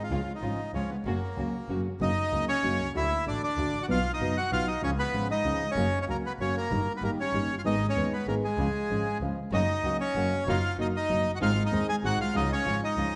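A reedy, close-miked bandoneon carries the melody up front in this nostalgic, playful tango clip, moving at 191 BPM in a rubato 3/4 and centred on F# major. A dark, thumb-plucked nylon-string guitar supplies the accompaniment, while a single bowed double bass plays sul tasto with light vibrato and an airy, intimate tone. A distant, woody string section adds lush stabs in the background from 0.1 to 1.8 seconds and again from 9.5 seconds, all set in the generous reverb of a recital hall.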